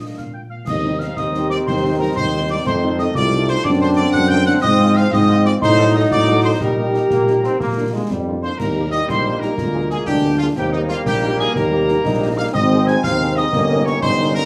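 This short cut from a longer piece sounds like a wind band in a small, moderately live room, with a studio reverb adding gentle space. It is a rousing, spirited military-style march in a straight 6/8 at 121 BPM, settling into Eb major from 4.6 seconds. A distant, roomy trumpet section carries the melody, while an airy wooden piccolo with rolled-off highs and expressive, tongued vibrato runs a second line high above. A warm euphonium with vibrato shares that second line from the background. A very quiet, soft-attacked French horn section fills in the accompaniment, and the up-front tuba anchors the bass with a mellow tone and light vibrato. Concert snare, bass drum and bright clash cymbals sit back in the mix from 0.2 seconds, and a trombone section joins with sustained chords at 0.7 seconds, the harmony moving through diminished and seventh chords before the second section opens at 8.6 seconds.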